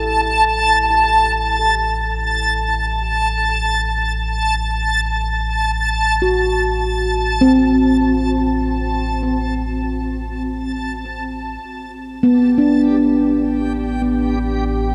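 Floating in free time, this melancholic, spacious ambient excerpt rests on a single Am7 chord as a ringing, stainless-steel handpan plays meditative arpeggios up front, its sharp finger strokes carried by delay and shimmer reverb. Beneath it, a round sine sub bass fades in across the full 14.9 seconds, while a reversed, granular texture swells dreamily above, bathed in its own built-in reverb plus shimmer, and fades out over the same span. Everything sits in a huge, wet ambient space with a cassette-tape character.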